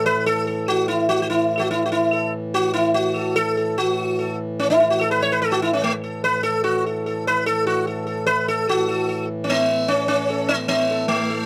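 Closely miked with light reverb, this serene, devotional Hindustani classical passage, cut from a longer piece in a three-beat metre, sets a bright, buzzing plectrum-plucked sitar up front, its sympathetic strings shimmering over the melody, against a reedy, mellow, dry pedal harmonium drone that breathes low beneath it throughout, the whole performance gradually speeding up and moving into a new section at 8.7 seconds.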